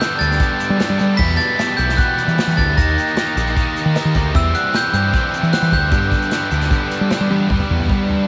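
A sparkling glockenspiel played with hard plastic mallets carries the melody of this jangly, wistful indie rock excerpt at 152 BPM in G major, joined by a very quiet, inharmonic FM bell line and a barely audible, gritty organ with slow rotary swirl, while two overdriven guitars (one biting with chorus and analog delay, the other a bright cranked stack) play a riff over an up-front, warm picked bass entering at 0.2 s and an airy small-room acoustic kit with dark cymbals and bundle sticks that adds a drum fill at 7.3 s, the whole captured on a muffled home cassette recording.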